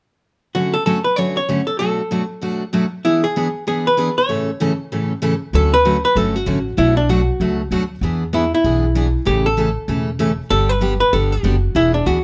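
Country western swing at a brisk 193 BPM in D major, this playful excerpt features a dark, clean hollow-body archtop guitar picking the melody over warm, full-bodied picked steel-string acoustic accompaniment, with a woody, thumpy pizzicato upright bass joining at 5.5 seconds as the chords cycle through Dmaj7, Bm7, E7 and A before reaching G, all set in light reverb.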